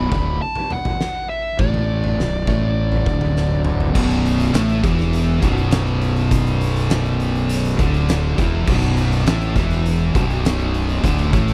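Stoner and doom metal in B minor at 102 BPM in a straight 4/4, this sludgy, heavy fragment is cut from a longer piece and opens on a Bm chord. A double-tracked fuzz guitar grinds out the riff from the start alongside a growly, overdriven fingered bass with tube saturation that sits up front and punchy in the mix. An oversized, low-tuned acoustic drum kit comes in at 0.1 seconds with a fat snare, punchy kick, crash, hi-hat and toms, its gritty, saturated sound pumping in a bright stone room. A dark, picked fuzz lead guitar carries a brief melody between D5 and B5 with tape echo until 3.6 seconds, and a drum fill leads into the second section at 3.9 seconds. From 4.0 seconds a scooped, high-gain double-tracked guitar adds a brighter edge to the riff, while the overall sound stays dry with little reverb.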